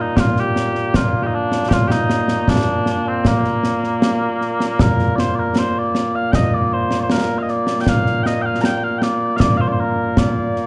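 Scottish traditional pipe music in 2/4 at 78 BPM, this short excerpt cut from a longer piece carries a proud, ceremonial mood in Bb major. Mellow small bagpipes carry the melody from the very start, their sweet, continuous tone shaded with vibrato and sitting up front as a solo voice across a range from Bb2 to Bb5. Concert snare drum and concert bass drum join at 0.2 seconds, also up front, with bright cymbals and the acoustic ring of a live room. The tune moves into a second section at 4.8 seconds and runs on until the cut at 10.7 seconds. A light reverb surrounds the ensemble, and the production leans dark and warm, with its highest frequencies kept in check.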